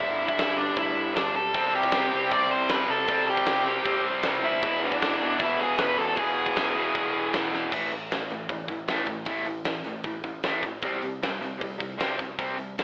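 A dark, smooth overdriven lead guitar carries the melody up front until 7.3 s in this aggressive, raw punk rock cut, over a bright double-tracked distorted riff guitar, a high-gain guitar tucked behind it from 1.5 s, a growly overdriven bass in the background and a big, punchy rock kit with a fat snare in a stone room that fills at 7.5 s, all filtered through a telephone-like sound with light reverb.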